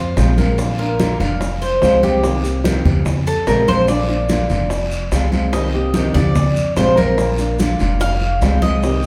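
A roomy, reverberant take heard from further back in a large studio, this brief cut from a longer Cuban son and guajira piece moves at 146 BPM in a straight 4/4 with a nostalgic, warm mood. The bright, metallic Cuban tres, its double strings partly doubled at the octave, plays picked arpeggios from the start and takes a solo from 2.2 seconds over a cycle of Fm, Bb and Cm7. Up front, the woody, dark upright bass gives a thumpy pizzicato foundation, while the fingerpicked nylon-string guitar adds bright classical accompaniment beneath. The percussion sits in the background: thick-skinned congas struck with hard hands, round low-tuned bongos played with soft hands, and grainy, mellow maracas. A raspy guiro sounds more distant, as if placed deeper in the large room.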